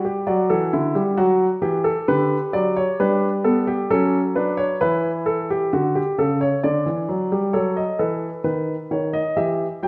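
Lively and joyful, this baroque-style classical fugue in three parts for solo baby grand piano, tuned to A4 = 441 Hz, moves at 66 BPM in a straight 4/4, its warm, up-front tone spanning C#3 to G5 and ringing in a wet stone room with a 1.3-second reverb heard from further back, while the harmony travels through D, G/D, A and D before turning to B7 at 7.6 seconds as this short cut from a longer piece ends at 9.9 seconds.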